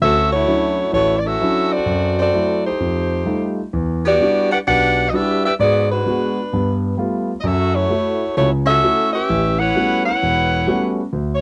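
A clear saxophone section carries the melody up front, its smooth top and light vibrato giving the ensemble a brassy, swinging character. Beneath it, a concert grand piano plays the accompaniment, intimate and natural in tone, with deep bass, long sustain and audible action noise close to the ear. This jazz excerpt, cut from a longer piece, moves at 130 BPM in 4/4 with a swung eighth-note feel in D major, both parts sounding together from 0.0 to 11.4 seconds. The harmony opens on Dmaj9 and travels through half-diminished and ninth chords before settling on an A13 at 9.3 seconds. The sound is a dry, close studio recording in a 1970s style, touched with light reverb.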